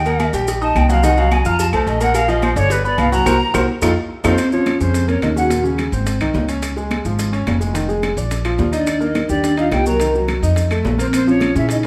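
A breathy flute with vibrato opens this driving, sophisticated Afro-Cuban jazz excerpt in Bb minor at 214 BPM, taking a solo over a growly, thumpy upright bass and an up-front concert grand piano with deep low end, while congas, bongos, cowbell, claves, maracas, agogo bells and saturated metal-shell timbales fill out the percussion, and the band hits an accent from 3.3 to 4.4 seconds. At 4.3 seconds a mellow, dark vibraphone with soft mallets and fast motor vibrato takes the melody, falling away at 5.6 seconds with the flute and returning with it near 8.8 seconds through a progression that resolves on Bbmadd9. The band plays live in one large studio with moderate reverb and a faint mains hum.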